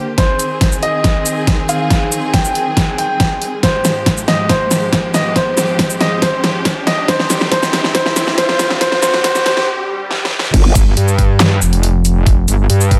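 Menacing and aggressive, this heavy half-time wobble dubstep fragment builds with a clear concert grand piano melody through tape echo over lush, bowed strings pumping with sidechain, a background riser, a knocking overdriven kick and an up-front dubstep kit with huge snare and bright hats, before a brief break gives way at 10.5 s to a growling, detuned bass stab and then a metallic FM wobble bass for the drop.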